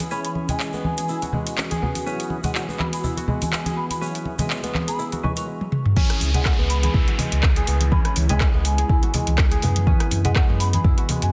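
A dense, heavily limited modern mix with light small-room ambience carries this hypnotic, spiritual afro house excerpt, where a ringing fingerpicked kora, an ethereal airy pad, a hollow bamboo bansuri, a fat, clean tonewheel organ with slow rotary stabs, bright close congas, a grainy egg shaker and a metallic-hatted afro-pop kit with handclaps and rim clicks play until a drum fill at 5.6 seconds leads into a drop at 6.0 seconds, where a deep, up-front electronic kick, a round sine sub bass and an electronic downlifter join.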